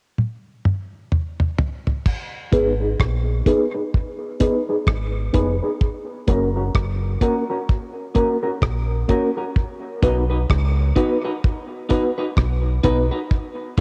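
Dub reggae with a heavy, spacious mood, cut from a longer piece recorded at home on cassette in a small room with light reverb. A damped 70s drum kit, dry and dark with a tight kick and rolled-off top, opens with a fill before a deep, round, punchy fingered bass enters at 2.5 seconds together with a slightly broken-up, compressed guitar bathed in spring reverb and dub echo. Reedy electric piano stabs with fast tremolo and dub echo sit over the G#m, F# and B changes while a filter sweep runs from 2.1 seconds to the end.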